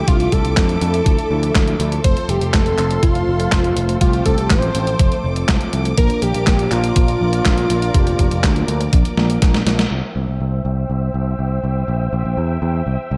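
Italo disco at 122 BPM in F major, danceable and sunny, with a thick, detuned sawtooth unison lead carrying the melody through digital delay until 9.4 seconds over lush, bowed studio strings holding sustained chords and dark, chorused synth brass stabs set in the background. A round, up-front picked electric bass anchors the Dmadd9, F and Bb changes alongside a thumpy electronic kick and a tape-warm 12-bit drum machine playing handclaps, hi-hat and a medium-tuned snare, both re-recorded in a large room. A drum fill and band accent close out the drums by 9.9 seconds, after which bass, strings and brass settle onto C in a dark production with light reverb.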